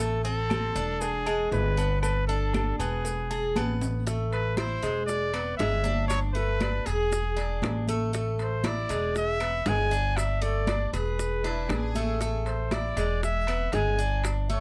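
A clear trumpet with light vibrato carries the melody up front from the very start of this sultry Cuban son and guajira excerpt at 118 BPM in A harmonic minor, over bright, metallic picked arpeggios on Cuban tres, a thumpy gut-string upright bass, and high-tuned congas, grainy maracas and ringing agogo bells and timbales in the background, with woody claves and round, low-tuned cowbell and bongos joining at 0.5 seconds, a drum fill at 3.8 seconds, and a reedy bowed violin section adding a brief second line at 11.4 seconds, all heard through close, detailed microphones with little reverb.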